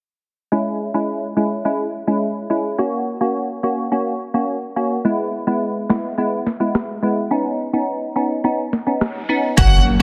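A straight 4/4 dancehall groove at 106 BPM in B major sets a bouncy, sunny mood, with a crisp, detuned wavetable chord stab pumping through C#m, F#, E and Badd9 under a filter sweep from 0.5 s, joined at 5.9 s by an up-front, tape-warm drum kit of deep kick, sharp snare, rim click and smooth hi-hats. At 9.6 s this short cut from a longer piece opens into a brief lift: a distant, lush violin section holds a high F#, a breathy, chorused pad pumps beneath it, and a thick saturated sine sub bass lands on a low F#, before an electronic impact sounds in the background at 9.8 s. The dense, heavily limited mix sits in a moderate hall reverb.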